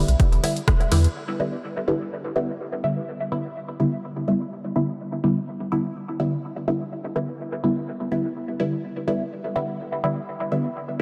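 A lightly swung 4/4 pulse at 125 BPM opens this cavernous, deep dub techno fragment in E minor, with an up-front, overdriven electronic kick and a dry analog drum machine of hi-hat, ride cymbal and rim click, the latter sent through overdrive and dub echo. A round sine sub bass, sustained and pumping against the sidechain, holds the low end beneath them, but bass, kick and kit all drop away by about 1.1 s. The filtered dub chord stab carries the piece from the start to 11.0 s, sounding an Em7 voicing that is muted, nasal and resonant, built from detuned sawtooth tones with a filter pluck of fast attack and short decay, a moving notch and a mellow phaser, pumping under sidechain and trailing dub echo. Around 0.9 s a very quiet riff from the same stab sound flickers higher up. A huge ambient reverb with a long 4.7-second tail gives the whole fragment its deep, hollow space, and the stab continues alone after the opening passage.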